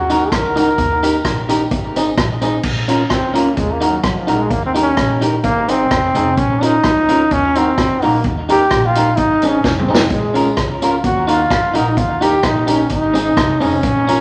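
Driving and mischievous, this 129 BPM ska excerpt with a light swing features a clear, smooth-topped trombone soloing up front with light vibrato over a woody, thumpy pizzicato upright bass, a compressed, slightly broken-up electric guitar with tape echo, and a punchy vintage drum kit with a rolled-off top that adds a fill at 9.6 seconds, while a distant, jingly tambourine sits very quietly in the background and returns at 10.4 seconds, all cycling through Ebm, Eb, Ab and Bbm in a wet, large studio reverb.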